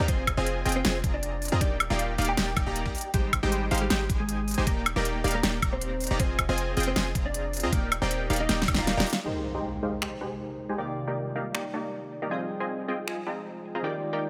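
Future bass in Eb major at 157 BPM with a half-time feel, playful and lush, cut from a longer piece that opens already in its drop. Punchy, detuned supersaw stabs carry the riff up front with a cassette-tape grit and sidechain pumping, over a deep, boomy 808-style bass and a dark, clean electric guitar melody coloured by ensemble chorus and dub echo. A knocking electronic kick and a pop kit of fat snare, crisp hats, finger snaps and woodblock drive the groove, and a drum fill from 8.5 seconds leads into a band accent as the kick drops out. At 9.3 seconds an electronic impact marks the second section, where glassy, wave-folded digital keys enter on accompaniment and an ethereal, airy pad with a slow attack swells in beneath them. Filter sweeps on the supersaw and the pad reshape the sound through to the end, as the chords cycle through Fm7, Ebmaj7 and Abmaj7 in a light reverb.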